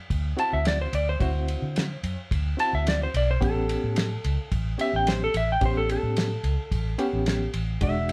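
Soulful and laid-back, this short straight-eighth soul blues cut features a clean, slide-played lap steel guitar soloing over a dark, round, foam-muted fingered bass, a cloth-damped drum kit with a fat snare and dark cymbals, and a barky, reedy electric piano with light overdrive and fast tremolo, all captured live in one room with moderate reverb as the chords move from D9 to A9.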